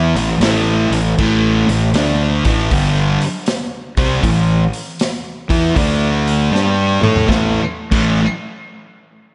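Smoky and heavy, this short blues rock and southern rock power trio passage swings at a slow 79 BPM in A minor, moving from Am to D5 and A5 as a thick, double-tracked fuzz guitar riff sits up front over a growly, punchy overdriven bass. A vintage drum kit with dark cymbals, a medium-tuned snare and a tight kick joins at 0.2 seconds and plays a fill from 6.5 to 7.3 seconds. A lush hall reverb gives the trio a big arena sound with a rolled-off top.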